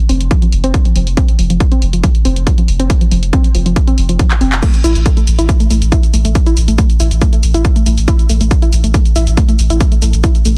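A dusty, warbling pluck riff with chorus and tape echo opens this relentless, intense cut of driving peak-time techno at 139 BPM in A minor under a filter sweep, together with a thick, saturated sub bass with sidechain pumping and a dry analog drum machine of crash cymbal, handclaps, hi-hat and shaker, joined by an overdriven, heavy kick up front from 0.3 seconds; the drum machine plays a fill at 4.3 seconds leading into the harmony's shift from F5 to A5, inside a dense, heavily limited mix with little reverb.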